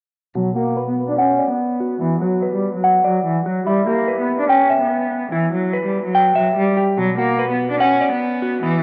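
A single bowed cello carries the menacing melody up front in this tense hip hop fragment, its smooth, vibrato-laden tone sounding distant through a low-pass filter and tape echo. A clean, hollow-bodied semi-hollow electric guitar plays fingered accompaniment alongside it from 0.4 to 8.8 seconds, moving through B minor, E minor and back to B minor at a half-time 145 BPM. A filter sweep runs through the passage, while light reverb and small-room ambience sit within a dry, gritty cassette-tape sound.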